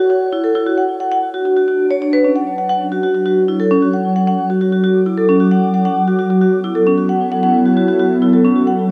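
A huge ambient reverb wraps this dark, eerie, intricate IDM fragment, cut from a longer piece and lasting under nine seconds. A glassy, ethereal FM pad holds full-bodied, mellow sustained chords with a slow attack and long release, colored by ensemble chorus, its own reverb and phaser. Up front, a vintage, band-limited vibraphone played with medium mallets rings out metallic arpeggios through a digital delay and slow motor vibrato, while the harmony moves from a rootless Bm at 0.6 s toward F#m7 at 6.0 s.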